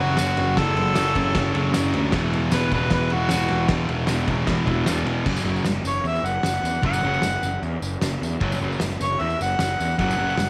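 A raw, gritty studio sound with studio reverb frames this short garage rock cut, where a thick, double-tracked fuzz guitar riff sits up front over a round, punchy overdriven bass. Entering at 0.2 s, an oversized, low-tuned acoustic drum kit brings a boomy kick, fat snare, crash and ride cymbals with a dark, saturated, rolled-off tone, joined at the same moment by a jingly tambourine lower in the mix. A clear harmonica with light vibrato carries the melody from the start and turns to a solo at 5.3 s as the chords move from F#m to E5 and then F#5.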